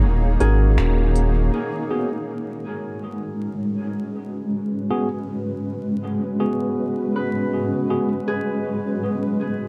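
A cloudy, blurred granular pad opens this hazy, meditative ambient dub fragment in G# minor at 80 BPM, holding detuned, full-bodied sustained chords up front beside a deep, round sine sub bass and a fingerpicked Celtic harp whose ringing arpeggios sit low in the mix behind a low-pass filter and dub echo. Clean tine electric piano stabs, heard as if through built-in speakers, arrive at 0.4 seconds with their own dub echo, while a faint organic electronic kit of finger snaps and smooth hi-hat, overdriven and re-recorded in a small room, offers only a brief touch of swung 16th-note groove. The band lands a short accent just before the bass drops out at 1.5 seconds, where the harmony shifts from F# to G#m7. From there the pad keeps evolving under a filter sweep, the harp keeps circling, and the electric piano drops out at 8.1 seconds. Dark tape saturation and vinyl crackle wrap the whole in a dusty, late-night haze.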